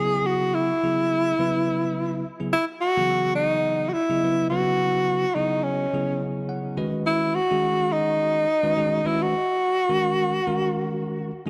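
Swung sixteenth notes give this jazz passage in 4/4 a loose, lilting pulse, and the mood is soaring and bright. A breathy tenor saxophone carries the melody up front in a mellow, intimate solo, its soft attacks, scooped notes and vibrato giving the line a whispered quality. A bell-like tine electric piano accompanies with a clean, direct tone across a broad range, and around 6.2 seconds it steps forward with a short fill. The harmony moves from C#m7 through C#9sus4 to a closing F# chord. A moderate plate reverb adds a lingering halo to the sound, and the saxophone finishes at 11.0 seconds while the piano rings on briefly to the end of this fragment of a longer piece.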